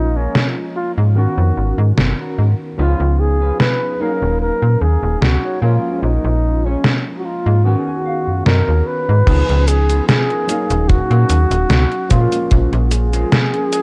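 A lightly swung 16th-note groove at 74 BPM in 4/4 sets a nostalgic, hazy vaporwave mood in G# dorian. The track is cut from a longer piece. A detuned 8-bit drum machine sits up front with a fat, tape-warm snare, hi-hat, cabasa and crash, while a snappy FM bass with a metallic, fast attack and decaying notes anchors the low end. A worn, slightly out-of-tune tine electric piano, lightly overdriven through a combo amp with ensemble chorus and tape echo, carries chords that cycle through A#m7, G#m11, C#7 and D#m7. Over this, a breathy, close-miked flugelhorn plays a whispered jazz-style solo with vibrato and scooped notes, roughened by 12-bit sampler grit and tape echo. A dark, fingered electric guitar riff murmurs in the background through lush chorus and a low-pass filter; a clean guitar fill arrives at 6.8 seconds, and a distant, roomy acoustic kick joins at 9.3 seconds as the second section begins, all wrapped in a small room and cassette tape haze.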